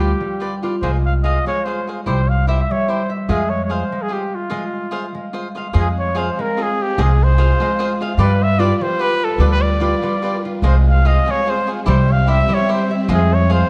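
Mexican folk mariachi in F minor, dramatic and passionate, moving in 3/4 at 147 BPM with a swung, rubato feel in this fragment cut from a longer piece. A classical-style solo trumpet with light vibrato and a smooth top carries the melody up front, over crisp picked cavaquinho, ringing fingerpicked concert harp arpeggios and a woody pizzicato upright bass that also sits forward. After a break around 4.5 seconds, a lush bowed violin section enters at 5.8 seconds with soft, expressive sustained chords in the background, all within a dark, warm production with light reverb.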